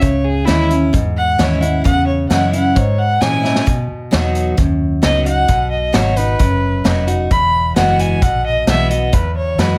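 A dark, woody fiddle takes a solo up front across this short honky-tonk and classic country excerpt, its single bowed line played sul tasto with light vibrato and portamento over an easygoing, sunny groove at 132 BPM in B major. A bright, fresh-stringed dreadnought acoustic guitar is picked in accompaniment, while a round, foam-muted vintage electric bass and an acoustic drum kit with a punchy kick, medium-tuned snare and rolled-off top hold the straight 4/4 beat, the kit breathing with a pumping small-room sound. The kit adds a fill at 3.4 seconds as the chords move from C#m to B and then Eadd9, all in a dry mix with little reverb.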